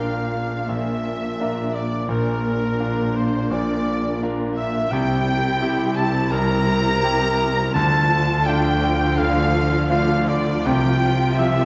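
A lush, reverberant scoring-stage sound frames this sorrowful, longing passage of cinematic orchestral film music, moving at a rubato 84 BPM in 4/4 through Bb, C, Dm and a closing Fsus2/C. A bright, polished concert grand piano sits up front with deep bass accompaniment, while a rich, distant violin section carries the melody and a mellow, close-miked solo cor anglais and a focused, smooth-topped second violin section add second lines. Behind them, an expressive viola section with portamento, dark woody cellos, clear even double basses and a very quiet, ringing thumb-plucked harp playing arpeggios fill out the texture for the full 11.7 seconds, cut from a longer piece.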